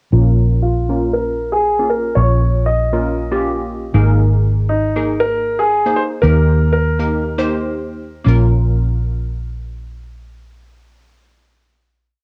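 Over a straight feel, this short, energetic and bittersweet dance-pop piece opens on a breakdown where a round, punchy muted electric bass plays a syncopated line up front beneath glassy, detuned wavetable plucks, whose syncopated close-voiced chords move through a filter sweep until 8.3 seconds. A polished baby grand piano, softened by cassette tape, carries a hook-based motif from 0.6 to 7.7 seconds. The piece settles onto a final chord in a snug booth ambience with a homespun cassette character.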